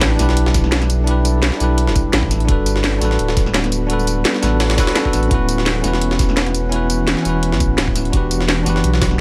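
Liquid drum and bass with a melancholic, rolling feel, cut from a longer piece, opens on a barely audible sub drop under an impact as a bell-like tine electric piano with tape echo and a round, tube-saturated sub bass sit up front over chords moving from A7sus4 through Gmaj9 and Dmaj13 to Em9. A glassy FM pad enters at 0.9 seconds in the background, its slow-attack chords softened by ensemble chorus and built-in reverb and pumping against the sidechain. Beneath it, a layered electronic kit with a cracking snare, bright hats and tambourine is stacked with a gritty, pitched-up jungle sampler kit whose high-tuned snare and hats are high-pass filtered, while a knocking electronic kick joins at 0.5 seconds, all set in a digital ambience.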